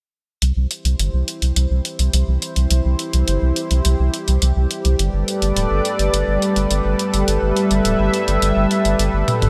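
A shimmering, chorused pulse-width pad holds sustained chords from C to Gadd9 in this romantic, uplifting synthwave excerpt at 105 BPM, with a filter sweep running through it and through the round, deep analog bass from 0.4 seconds, while a detuned 8-bit sampler-style drum machine plays hi-hat and toms before a drum fill at 9.3 seconds, all set in a lush hall reverb with bright 1980s-style digital production.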